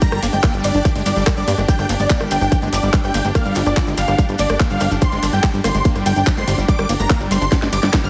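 Heavily compressed and radio-like with light reverb, this driving, intense psychedelic trance cut in G phrygian runs at 144 BPM, led by a huge, detuned supersaw melody with phaser, delay and sidechain pumping, over a tight, up-front electronic kick and a garage drum kit with a cracking snare, handclaps, rim clicks and warm hats. A punchy, funky analog bass plucks low while a squelchy, distorted acid riff with chorus and tape grit sits behind, joined by an evolving, morphing wavetable pad, biting symphonic strings and grainy vintage maracas. A nasal, wobbling vowel-sweep bass surfaces very quietly from 2.9 to 6.4 seconds, and a drum fill closes the passage at 7.5 seconds.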